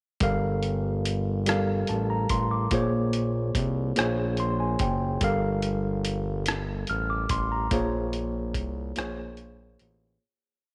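A slow, straight six-eight R&B beat from a dusty, sampler-style drum kit sets a late-night, sultry mood, with hi-hat, rim click and a thumpy kick that sound gritty and compressed, as if re-recorded in a small room. A smooth synth bass blending sawtooth and square waves glides underneath in a slow, sliding line, with portamento, vibrato and chromatic approach notes leading between sustained tones. Up front, a worn, slightly out-of-tune tine electric piano heard through its built-in speakers plays spread chords in a quarter-note rhythm, alternating between Gm9 and Bbm9. It adds a short fill from 4.0 to 5.2 seconds. Light reverb surrounds the whole short piece, which fades out from 7.7 seconds to its end at 10.2 seconds.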